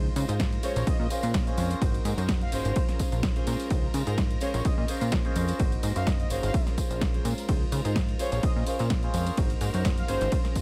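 A punchy, funky plucky analog bass anchors this groovy, sensual filtered disco house excerpt in Bb minor at 127 BPM, pumping beside an up-front, tape-warm electronic kick that enters at 0.4 seconds, a house kit of punchy snare, hi-hat and ride with a background tambourine, a clear concert grand piano with phaser, a swirling, warbling string machine with 12-bit grit, a bright, clean direct-recorded electric guitar riff, and a bold, fat analog synth brass melody with chorus and delay arriving at 0.6 seconds, all cycling through Dbmaj9, Bbm9 and Ab9 in a dry, close mix.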